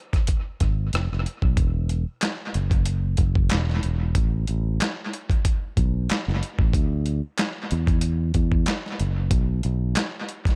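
A dry, echo-heavy mix frames this relaxed neo-soul R&B excerpt at 93 BPM with a gentle sixteenth-note swing, where a gritty, compressed sampler-style drum kit with overdrive and tape echo sets up thumpy kick, medium-tuned snare, rim click, hi-hat and handclaps from 0.1 seconds, and a dark, round, punchy fingered electric bass joins up front at 0.6 seconds.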